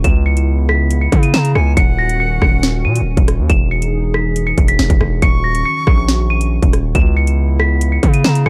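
A cold, tense half-time drill beat at 139 BPM in Eb phrygian opens with a slightly out-of-tune, bell-like celesta melody on delay, a deep, detuned analog pad with chorus, a heavy, saturated 808-style bass and an up-front electronic kit of hard-clipped kick, sharp snare, rim click and metallic hats. At 1.3 seconds a breathy silver concert flute with unsteady vibrato and delay adds a quiet second line. Chords move from Dbm7 through Ebm7 and Emaj7 and back in a dark, dry production, and this short cut ends at 8.5 seconds.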